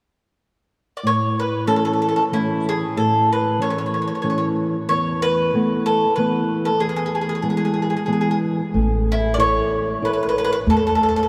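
A long, wet cathedral reverb fills this church or concert hall recording, letting every note hang in the air. It is a romantic, lively Italian folk serenade in a lilting 3/4 with a gentle swing. After a second of silence, a bowl-back mandolin and a nylon-string guitar enter together at 1.0 seconds, both up front. The picked, double-string shimmer of the mandolin carries the melody, while the small, thumb-plucked guitar supplies a warm accompaniment through a movement from A to Esus4 and E. At 8.7 seconds a woody pizzicato upright bass joins quietly underneath as the harmony returns to A, before this fragment of a longer piece breaks off.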